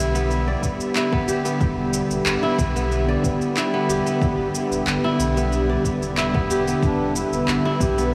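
Mystical and earthy, this short piece of organic downtempo, cut from a longer work, moves at 92 BPM in a straight 4/4 around an Em7 chord in E minor pentatonic, tuned to A4 = 438 Hz. A smooth, detuned sawtooth pad with a soft attack holds sustained chords under chorus, sidechain pumping and shimmer reverb, while a bright, fingerpicked kora rings out crisp and up front with arpeggios trailed by diffuse ambient delay and shimmer reverb. Beneath them a round sine sub bass sustains deep and mellow, also pumping with the sidechain, and a very quiet, breathy wind-like noise layer drifts in at 0.3 seconds. Layered electronic drums add grit: an overdriven shaker and handclaps from 0.2 seconds and a deep, overdriven kick from 0.6 seconds. At 6.8 seconds a mellow duduk takes a folk-style solo with light vibrato and scooped notes, its smooth top wrapped in delay and shimmer. The dreamy mix is soaked in a huge ambient reverb with a 7.9-second tail over a small room ambience.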